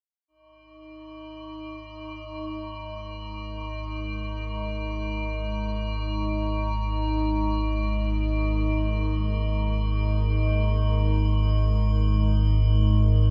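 A vast, echoing space with a long reverb tail surrounds this desolate dark ambient drone, a short cut from a longer piece that floats in free time, tuned slightly sharp at A4 = 441 Hz. A metallic, inharmonic drone appears first at 0.7 seconds, an eerie, warbling, vintage-toned texture held on a single sustained note with chorus. At 1.7 seconds a deep, rumbling drone arrives up front, ominous and detuned, with a wave-folded edge and a slow attack that lets it bloom into the low register. A moody, warm pad built from unison, sub-octave layers and a moving notch joins at 2.9 seconds, fading in with sustained chords and its own chorus. The harmony rests on a G#sus2 sonority throughout, and the pad and the rumbling drone carry a dark, shadowy colour that deepens the sense of isolation.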